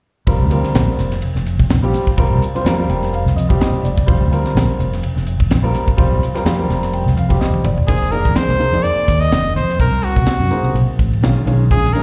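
A funky, slick jazz fusion groove in F dorian at 126 BPM opens with a warm grand piano, a growly fingered electric bass and a tight, dry funk drum kit with a high-tuned snare, all playing together over a Fsus24 chord with a lightly swung 16th feel, while the piano adds slapback-echoed fills. A drum fill leads into the trumpet's entrance at 7.9 s, where a brilliant, forceful trumpet solo with scooped notes and light vibrato, also given a slapback echo, rides over a shift through Fm7, Cm7b5 and B9. The piece is heard as a live gig through the venue's PA with a light recital-hall reverb, and this cut from a longer performance ends at 12.0 s.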